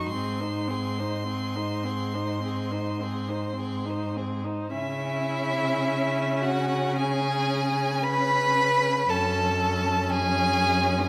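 A string quartet begins together in a slow, elegiac classical movement cut from a longer piece, with a close, up-front violin carrying the melody in smooth, clear bowed tones while a more distant second violin sings a rich line beneath it. The viola supplies focused accompaniment and the cello, also placed near the listener, anchors the bass, every part bowed with vibrato and shaped with flexible rubato. A new, solemn section begins at 4.7 seconds, and the moderate reverb of a recital hall surrounds the ensemble.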